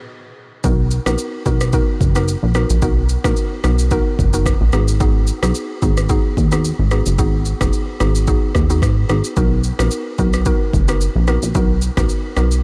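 Afrobeats at 110 BPM with a light 16th-note swing, this hypnotic, mellow excerpt opens on a brief break before all three parts enter at 0.6 seconds over Bmaj7 and G#m7 chords. A punchy, wave-folded analog bass sits up front with a funky filter pluck, while an electronic drum kit of deep kick, rim click and shaker adds overdriven grit from a small room. Behind them, a woody, round mallet-like FM pluck with a warbling chorus and noise layer supplies vintage accompaniment under light reverb.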